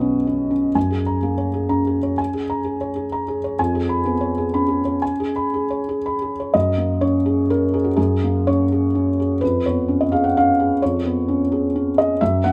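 In a rubato 3/4 sway at 116-132 BPM, this hopeful, tender neoclassical minimalist piano excerpt in F# major offers a solo felt-muted upright piano spanning B1 to B5, soft, dark and intimate with thick felt and audible action noise, sitting up front in light room reverb as it moves from Bsus2 into F#add9 and C#7/E#, then restates F#add9 and C#7/E# at 6.5 seconds before the cut at 12.5 seconds.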